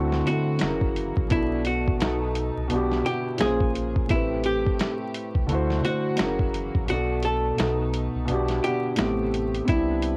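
A swung, laid-back groove in four drives this nostalgic, reflective lo-fi hip hop clip, taken from a longer piece, with a compressed, pitched-down sampler-style drum kit of thumpy kick, medium-tuned snare, hi-hat and finger snaps sitting up front under cassette saturation. The kick drops away from 6.9 to 9.7 seconds, loosening the pulse before the clip ends. Underneath, a round sine sub bass holds sustained, mellow low notes, while a felt-muted upright piano plays intimate, dark accompaniment with audible action noise, softened by tape and a low-pass filter. A clean, hollow-body archtop guitar, miked and amplified, enters at 0.3 seconds with a picked melody, its tone filtered and taped. Far behind, a bowed studio string section with a reedy, gut-string, period-style sound sustains smooth chords, and the whole home-cassette recording carries vinyl crackle and light reverb over a jazzy, looping progression of seventh chords.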